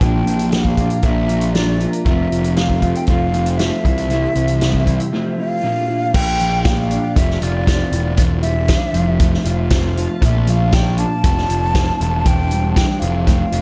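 A straight 4/4 groove from a punchy, up-front vintage kit, its crash, hi-hat, kick and medium-tuned snare trailed by analog delay, drives this hypnotic, kaleidoscopic psychedelic rock fragment, with a fuzzy overdriven picked bass sitting just as prominently underneath. A dark, clean, fingered electric guitar riff, double-tracked and coloured by phaser and delay, circles Bb, F and C chords, while a very quiet glassy FM pad holds ethereal chorused chords far behind. A breathy concert flute with vibrato, tongued notes and lifted highs carries the expressive melody through delay across the whole echo-heavy mix, which shifts into a second section at 6.1 seconds.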